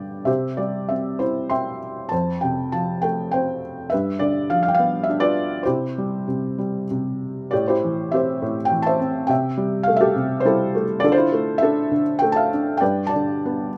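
A soft, intimate felt-muted upright piano sits up front in a light reverb, its mellow, short-sustained tone giving this lyrical classical excerpt a close, natural feel. Played solo in 3/4 with a rubato lilt between 91 and 105 BPM, it moves through C major harmonies such as Fadd9 and G7, spanning F2 to C6. Around 7.5 seconds the piece turns to a second idea colored by Am7, C6 and Dmadd9, settling on Gadd9 near 12.8 seconds in a hopeful, warm mood.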